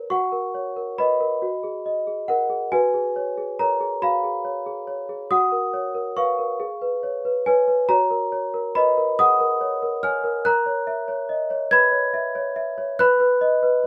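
A boxy small room gives a moderate halo to a worn celesta that sits up front, its felt-hammered tones bell-like, delicate and slightly out of tune. This classical lullaby, cut from a longer piece, sways in a gentle rubato 6/8 as the solo celesta ranges from the middle register into high, sweet chimes. The dreamy, tender harmony drifts through seventh chords over an F# bass, then the bass begins to move before the music settles on a new chord at 13.0 seconds.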